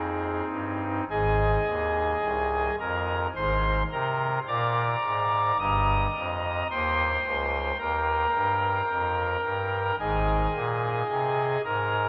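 A solo pipe organ on a soft, up-front oboe reed stop with tremulant and romantic voicing carries this majestic, serene classical chorale-style fragment, cut from a longer piece, in Ab major at a rubato 54 BPM in 4/4, tuned to A4 = 443 Hz, spanning G1 to Eb6 as its chords move from Ab through Bb7/Ab and Eb/G back to Ab at 10.0 seconds, all within a huge reverb of 7.0 seconds that places it in a vast, echoing space.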